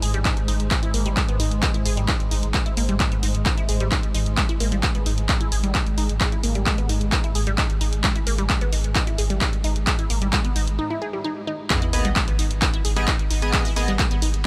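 Driving peak-time techno at 131 BPM in G# harmonic minor, this short cut from a longer piece feels industrial and hypnotic. A deep, round sub bass with overdrive and a low-pass filter anchors the groove from the start. A punchy analog drum machine sits up front with handclaps and hi-hats, and a dry electronic kick joins at 0.3 seconds. A squelchy, detuned blip pluck carries the riff through phaser, tube saturation and digital delay, while a swarming granular drone hangs beneath until a brief break at 10.8 seconds. At 11.7 seconds the drop lands on G#m with edgy, nasal sync-sweep polysynth stabs washed in chorus and tape echo, alongside a very quiet sub drop impact. Sidechain pumping breathes through the bass, pluck, drone, stabs and hats, all set in light reverb and digital ambience.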